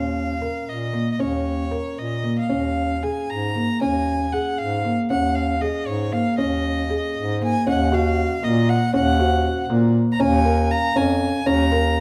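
Driven by a straight 5/8 pulse at 233 eighth-note beats per minute, this urgent, hypnotic chamber piece in Eb dorian, cut from a longer work, opens with a warm, biting violin melody with light vibrato carried up front over felt-muted upright piano arpeggios, whose dark, intimate tone carries audible action noise, and a clear, soft-attacked bass clarinet line. At 7.7 seconds the harmony moves from Dbadd9/Eb to Ebm7 and a bell-like celesta slips in quietly in the background, adding a delicate, ringing texture. The whole ensemble sits in a wet recital hall reverb.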